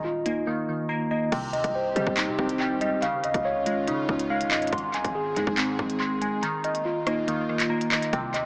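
Light reverb, a digital ambience and heavy echo give this tense, menacing drill cut a boxy, small-speaker sound. Up front, a mellow tine electric piano plays clean arpeggios through tape echo, while glassy digital keys with chorus fill in the harmony lower down. The drill drum kit comes in at 0.3 seconds with a hard-clipped kick, crisp hi-hats, handclaps, rim clicks and crash cymbal in a half-time feel, then drops out briefly before the chords change at 1.3 seconds. An airy, breathy pad enters at 1.7 seconds with detuned, warbling chords sitting in the background. Underneath, a punchy 808-style bass with a noise layer hits hard and decays, and near the end the kick falls away while the other parts continue. The harmony moves from Ebsus2 through Cm, Dbadd9 and Ab before returning to Ebsus2.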